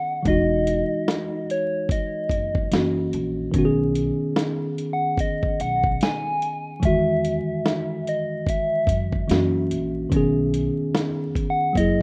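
Mellow and dreamy, this lo-fi hip hop excerpt drifts along at an unhurried, swung pace, cut from a longer piece and wrapped in vinyl crackle and the rough feel of a home demo. A soft, round synth lead carries the melody from the very start, its gentle keys-like tone bright and up front, with a chorus shimmer and a low-pass softening. Beside it, a worn, slightly out-of-tune tine electric piano plays the accompaniment, lightly overdriven through a combo amp and filtered so it sits mellow and close. Just after the opening, an acoustic upright bass enters with a woody, dark pizzicato line, joined at the same moment by a sampler-style soul drum kit whose thumpy kick, medium-tuned snare and hi-hat carry a gritty 12-bit character and the echo of a large room. The harmony circles through Emaj9, F#7 and B69 twice, giving the loop a hazy, suspended glow.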